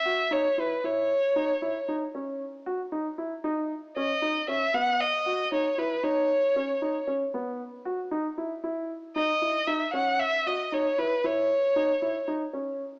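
A bowed violin, played by a single player, opens the cut at 0.0 seconds with a smooth, vibrato-rich melody, joined almost at once by dark, mellow baby grand piano arpeggios in this tense, brooding progressive instrumental at 115 BPM in 5/4, tuned to A4 = 437 Hz, where both parts carry a cassette tape tint and sit up front in a lush hall reverb with a homemade small-speaker sound, the harmony settling on B before the chords drop away at 8.6 seconds, and the violin stops at 12.3 seconds and the piano at 12.8 seconds.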